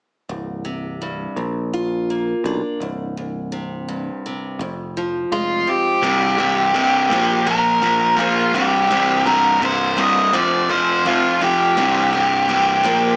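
Heard through a small-speaker sound in a wet, large studio reverb, this dark, angsty rock excerpt at 84 BPM opens with bright picked steel-string acoustic guitar arpeggios, with finger squeak, over a growly, up-front electric bass. A dark octave-fuzz lead guitar takes the melody at 5.3 seconds, the bass drops out at 5.6 seconds, and an overdriven semi-hollow guitar adds a hollow-body riff from 6.0 seconds over a progression of C, Bb and F chords.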